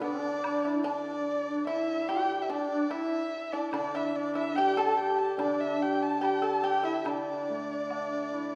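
Pastoral and graceful, this short passage cut from a longer Chinese traditional chamber piece moves at 72 BPM in 4/4 with a rubato feel, tuned slightly low to A4 = 435 Hz. A dark, woody erhu carries the melody up front, its bowed line played by one player with soft attacks, vibrato and gliding portamento. Beneath it, a breathy, bright bamboo xiao and a mellow, dry pipa share a second line, the xiao expressive with crisp attacks and vibrato, the pipa percussive under its fingerpicks. A hammered dulcimer supplies shimmering, ringing accompaniment in the lower register. A very quiet, close woodblock enters at 0.4 seconds and stops at 8.1 seconds, and the ensemble sits in the wet reverb of a scoring stage.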